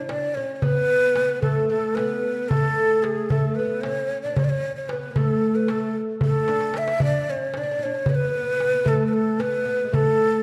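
A breathy, end-blown reed-cane ney carries the melody up front, its tongued, expressive phrasing colored by vibrato, in this stately Turkish makam ensemble passage cut from a longer piece, moving in 7/8 at 226 BPM counted in eighths with a straight feel. Beneath it, a woody, fretless oud with double strings plays a plectrum-plucked second line in a lower register. A crisp, compressed metal-shell darbuka struck with hard hands adds saturated punch and a fill at 6.5 seconds, all set in a wet scoring-stage reverb with a dark, warm production.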